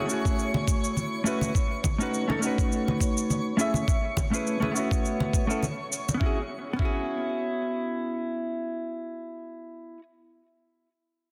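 This sunset chillout piece begins with a dark, clean hollow-body jazz guitar, fingered and placed up front, alongside a twinkling granular texture that sparkles above it with a slow-attack, octave-up shimmer and its own built-in reverb. At 103 BPM in 4/4 with a light swing on the 16ths, a gritty sampler-style shaker, a thumpy electronic kick drum and hard-hand congas with a saturated tone settle into a smooth, sunny groove. The guitar's low-pass filter and delay soften its chords as the harmony in E major moves through F#m9, B9, Amaj7 and B9sus4. The shaker, congas and shimmering texture stop at 6.2 seconds, where the music resolves to E6, and the kick carries on until 7.0 seconds. The guitar continues through the close of this cut from a longer piece, set in a lush hall reverb with a dense, heavily limited modern master.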